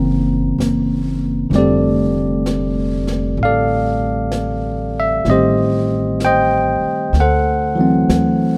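A slow 64 BPM swing in 4/4 sets an intimate, late-night mood for this jazz ballad fragment in F major, with a woody pizzicato upright bass holding down the low end from the start and a brushed drum kit of snare and hi-hat slipping in quietly at 0.6 s. Up front, a bright, bell-like tine electric piano with a barky bite carries the harmony through Gb7#11, F69, Am7b5 and D7. A moderate plate reverb and a rough home-demo mix give the whole piece an unpolished feel.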